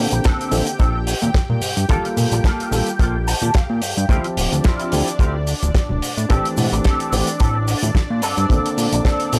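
A tight, dry kick sits up front at 109 BPM in 4/4 with a lightly swung sixteenth feel, alongside a damped 70s kit of hi-hat, shaker and medium-tuned snare, plus very quiet, soft-handed vintage congas. In D minor, a fat, saturated analog bass with a filter sweep pumps against the kick beneath a dark, mellow baby grand carrying 12-bit sampler grit and analog delay, while a lush, detuned unison pad adds chorus and phaser shimmer over Bbmaj9, Gm9/Bb, Dm11 and Am7. An envelope-filtered electric guitar picks a compressed riff through ensemble chorus and delay, and a clean guitar fill surfaces from 3.0 to 4.1 seconds, all captured as a gritty, cosmic, groovy nu-disco excerpt in a small room.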